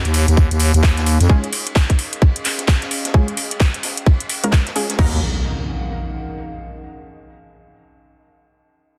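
A dense, heavily limited small-room mix carries this aggressive, swaggering slice of swung bass house, where a tight, up-front electronic kick and a growling, tube-saturated FM bass drive beneath bold, bright orchestra-hit-like synth stabs moving through a filter sweep, while a house kit adds metallic hats, claps and crash, a vintage kit with dark cymbals, ride and a high-tuned snare sits in the background beside a jingly tambourine that stops at 1.3 seconds, a warbly, nostalgic lo-fi pad fades out beneath, and an electronic impact lands at 5.1 seconds.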